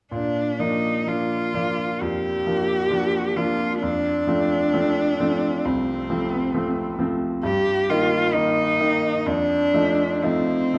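Lyrical and tender, this short romantic classical passage for cello and grand piano, cut from a longer piece, unfolds in a rubato 4/4 at 58-68 BPM in Bb major, tuned to A4 = 437 Hz. A single bowed cello sings the melody up front with a rich tone, vibrato, soft attacks and expressive portamento, while a bright, brilliant grand piano, also up front, accompanies from 0.1 to 10.8 seconds over chords moving from Bb to F, Eb/G and F7, all set in a moderate scoring-stage reverb with a dark production.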